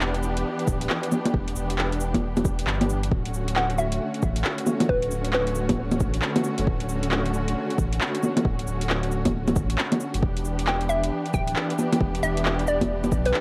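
Light reverb and a layer of vinyl crackle frame this short future garage excerpt, which carries a rainy, melancholic mood at 135 BPM in 4/4 with a swung sixteenth-note feel in E dorian. A lush, bowed symphonic string section sits up front with rich vibrato, holding sustained chords that pump against the sidechain as the harmony moves from Em7 to Dmaj7 at 3.1 seconds and back to Em7 at 10.2 seconds. Beneath it, a round sine sub bass with tube saturation holds the low end, while an overdriven deep house kit of bongos, cabasa, handclaps and metallic hi-hats plays throughout, re-recorded in a large room. A deep, overdriven electronic kick joins at 0.7 seconds. A hollow, bouncy square-wave pluck with detuning, a sub octave, chorus and analog delay adds a mellow, decaying melody in two brief phrases, the second arriving at 10.7 seconds.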